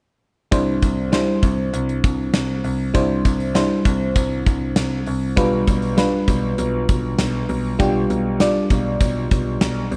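Nostalgic and uplifting, this short cut from a longer 1980s-style pop piece pairs a glassy, bell-like FM electric piano with chorus playing the chords over a clear concert grand piano holding down deep bass notes and a punchy, gated 80s drum kit of kick, medium-tuned snare and hi-hat in a bright stone room, all three up front from 0.5 to 10.0 seconds as the harmony moves from Cadd9 to G7/B.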